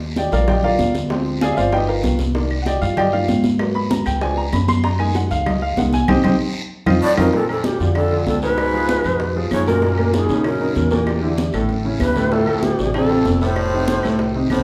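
A clear, up-front upright piano takes a solo over ringing, high-tuned congas, soft low-tuned bongos, raspy guiro, growly pizzicato upright bass and woody claves joining at 2.5 seconds in this sunny, lively Afro-Cuban jazz piece at 192 BPM, until a band accent and drum fill lead at 7.0 seconds to an airy bamboo shakuhachi melody with expressive vibrato over a scooped, clear baritone saxophone second line, all set in a reverberant live studio room.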